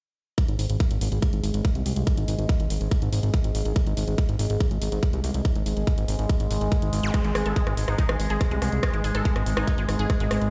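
Driving and alien, this short cut from a longer psychedelic trance piece runs at 142 BPM in a straight 4/4, sitting in G# major on a G#5 chord throughout. A tight, overdriven electronic kick sits up front from the start, alongside a layered garage kit of hi-hat and rim click, both carrying studio reverb. A fat analog bass, thick and detuned with ring modulation and a filter sweep, holds the low end between G#1 and B#1 with a mellow, sustained tone. Beneath it all, an overtone-sweeping drone on G#3 sustains resonant chords with slow attack, chorus, built-in reverb and sidechain pumping. At 7.0 seconds a brief electronic zap flickers in the background, and at 7.1 seconds a lush, bright unison pluck enters with a wave-folded riff ranging from G#3 to A4, its short decay trailed by tape echo and sidechain pumping. The mix is fairly dry yet sounds as if played on a big sound system in a bare stone room.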